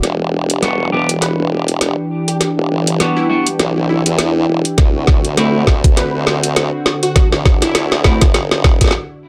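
A playful, swaggering glitch hop excerpt, cut from a longer piece, builds over a swung groove in 4/4 with a dark, faintly humming production in a moderate studio ambience. A smooth, detuned sawtooth pad holds sustained chords moving from Em7 to D7 at 4.8 seconds, while an up-front formant-sweep wobble bass churns underneath with chorus and a high-pass filter. The electronic drum kit keeps metallic hats and a woody snare running through a drum fill, and a gritty, thumpy sampler-style kick joins up front at 4.8 seconds. A clean, picked electric guitar plays stabs with sidechain pumping, digital delay and a filter sweep, and a punchy, catchy unison lead carries the melody from 1.2 seconds with vibrato, ensemble chorus and its own sweep. Everything drives as a build-up toward a brief break at 8.9 seconds.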